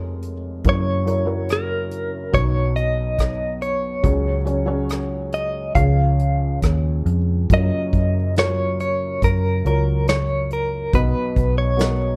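A clean, direct-recorded electric guitar carries the melody up front from 0.7 seconds, its compressed, picked tone shimmering with tremolo over a heartfelt, nostalgic acoustic folk-pop ballad in F# major at 70 BPM. Beneath it, a felt-muted upright piano adds mellow, intimate accompaniment, a foam-muted vintage bass sits round and punchy, and a soft brush kit with a punchy kick, snare, rim click and hi-hat keeps a straight 4/4 in a small, natural room. The dark production, touched with light reverb, moves from a section built on Badd9 and C#sus4 into an F#maj7 passage at 7.5 seconds in this short cut from a longer piece.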